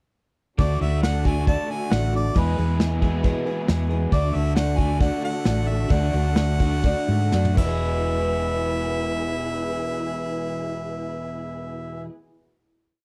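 From 0.6 seconds, a clear harmonica with light vibrato sings a motif-based melody over eighth-note strumming on a picked steel-string acoustic guitar, a crunchy, double-tracked overdriven guitar ringing chords through spring reverb, a round, up-front hollow-body electric bass playing a dotted figure, lush bowed strings holding dark chords in the background and a soft brush kit with a big rock groove, in this nostalgic, dry 1970s-style folk and heartland rock piece in E mixolydian at 118-137 BPM that slows from 4.1 seconds to 7.8 seconds, as the drums close with a fill starting at 7.3 seconds, before a final hit rings out.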